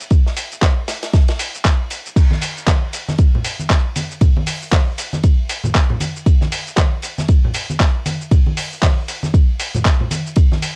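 House groove at 117 BPM in 4/4, swung at 59% on the sixteenths, with a sunny, warm mood in this short excerpt cut from a longer piece. A deep, layered electronic kick sits up front with a tape-softened weight, while a gritty, overdriven soul sampler-style kit supplies cabasa, crash, handclaps and hi-hat, sounding compressed and re-recorded in a small room. Further back, an acoustic studio kit adds hi-hat, ride and a medium-tuned snare with a mid-forward, rolled-off character, its cymbals and hats pumping under sidechain and thinned by high-pass filtering. Congas join at 2.3 seconds, bright yet low-tuned with a thin skin, saturated and compressed. The whole thing is dry, with little reverb, and carries the texture of a home cassette recording.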